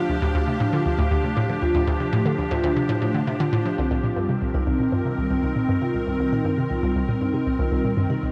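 A straight 4/4 pulse at 118 BPM drives this hypnotic, expansive stretch of sequencer-driven ambient space music, where a bouncy, nasal square-wave pluck riff sits up front beneath ringing soft-mallet vibraphone arpeggios with tape echo and a bright, morphing wavetable pad holding sustained chords in a lush hall, while an airy, wind-like noise texture breathes in the background until 3.8 s, when the harmony shifts from D minor to C minor and a filter sweep moves across the synth arpeggio sound.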